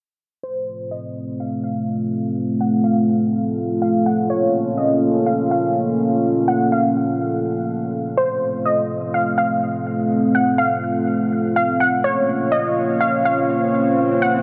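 Hip hop with a spacious, melancholic half-time feel, this excerpt pairs a dark, detuned analog pad holding sustained chords with a warbling, lo-fi pluck carrying the melody, both up front and softened by chorus and low-pass filtering, with delay trailing the pluck. A filter sweep runs across the whole passage as the harmony moves between F and Bbm, all bathed in a huge, wet ambient reverb. An electronic swell sounds in the background from 13.3 seconds until the cut at 14.4 seconds.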